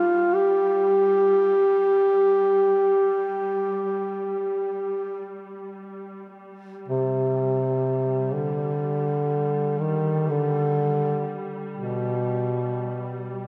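This is a Caucasian folk lament, mournful and solemn, heard as a short passage taken from a longer piece. A dark duduk carries the melody from start to finish, sitting up front as a solo voice and shaping its lines with scooped notes in a folk style across a range from B2 to G4. Beneath it, a muted string section holds a single drone on G3 throughout, its bowed ensemble tone veiled and lush, with soft attacks and vibrato, sitting distant and subdued under the reed. The melody moves into a new section at 6.4 s, continuing over the same sustained bed until 13.5 s. A moderate church reverb with a long 3.7-second decay surrounds the whole, lending the lament a spacious, hallowed air.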